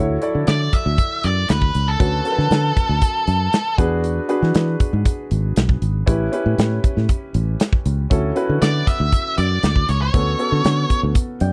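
A dry, close studio sound frames this glossy, urban slice of polished 1980s jazz-funk pop in D major at 118 BPM, where a growly, foam-muted fingered electric bass and a modern studio drum kit with a punchy kick and medium-tuned snare sit up front under a baby grand piano with short sustain and subtle chorus, while a dark, picked octave-fuzz lead guitar with distortion and slapback echo carries the melody from 0.5 to 3.7 seconds and returns at 8.6 seconds over chords moving from Dmaj7 through E7 and A9 to Dmaj13.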